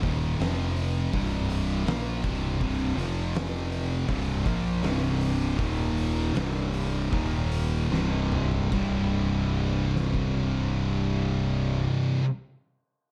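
A heavy, sludgy stoner and doom metal excerpt opens at once with a bright, double-tracked high-gain guitar, a dark fuzz guitar, an up-front growly overdriven fingered bass and an oversized low-tuned acoustic drum kit with a fat snare, punchy kick and dark cymbals, all grinding through power chords in C minor at 74-82 BPM in 4/4, before a second fuzz guitar joins at 2.6 s as the tempo slows, a drum fill at 7.9 s lands on a final C at 8.7 s, and the dark production carries a light reverb.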